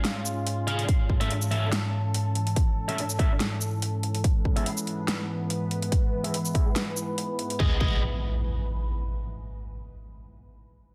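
A punchy, up-front electronic kick drives this menacing, chaotic heavy wobble dubstep excerpt at 143 BPM in a half-time feel with a light swing, set in G# phrygian over chords moving from C#/G# through A/G# and E/G# to G#m. A detuned, warbling wavetable pad sustains from the start until 7.8 seconds with phaser, reverb and sidechain pumping, while a dubstep kit of huge snare, metallic hats and shaker rides alongside and a bright, high-gain guitar enters at 0.7 seconds with gritty, 12-bit-sampler-colored stabs under delay, a low-pass filter and a filter sweep. At 7.6 seconds the kit drops away and an electronic impact hits in a dense, heavily limited modern mix with light reverb.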